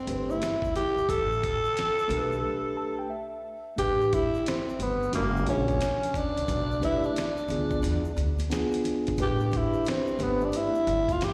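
A growling, breathy tenor saxophone leads this smoky, mellow jazz-hop cut at 89 BPM in A minor, its raspy subtone, vibrato and scooped notes sitting up front with a slapback echo over a swung 16th-note groove. Beneath it, a clean tine electric piano comps with its own slapback echo and takes a fill during the break from 2.4 to 3.8 seconds, while a woody pizzicato upright bass anchors chords moving from A7sus2 through F#, Bm7b5 and E7b9. A compressed, gritty sampler-style kit with a thumpy kick sits above bright, dry congas and tube shaker tucked in the background, all heard through a venue PA in recital-hall reverb, in this excerpt from a longer piece.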